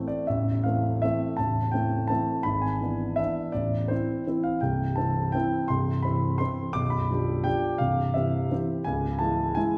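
Swaying in an uneven, rubato three-four lilt, this bittersweet and elegant fragment of a classical piano waltz features a solo concert grand with intimate, natural tone, deep bass, long sustain and audible action noise, its harmony moving through E7/G#, C and G7/B before turning to C#m at 8.9 seconds, set in a reverberant recital hall heard from further back in the room.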